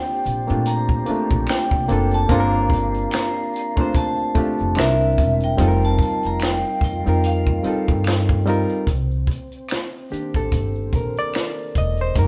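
A barky, reedy electric piano sits up front with a light overdrive through its built-in speakers, comping through this late-night, introspective neo-soul and R&B cut before taking a bright solo from 8.9 seconds. Above it, a vibraphone struck with hard mallets carries the melody with a metallic, ringing tone and slow motor vibrato in a boxy small-room sound, finishing its line at 8.4 seconds. A mellow, hollow flute section holds pure, tongued chords with vibrato in the background, while a woody pizzicato upright bass on steel strings anchors the low end. A compact cocktail drum kit enters at 0.3 seconds, with a high-tuned snare, punchy kick, hi-hat and finger snaps sitting up front, and a tube shaker with group handclaps adds a soft background layer. At a relaxed 73 BPM in 4/4 with a swung sixteenth feel in C dorian, the band plays live together in a moderate stone room, moving through Bb69, Gm11, C7 and F9sus4 before settling on Cm7.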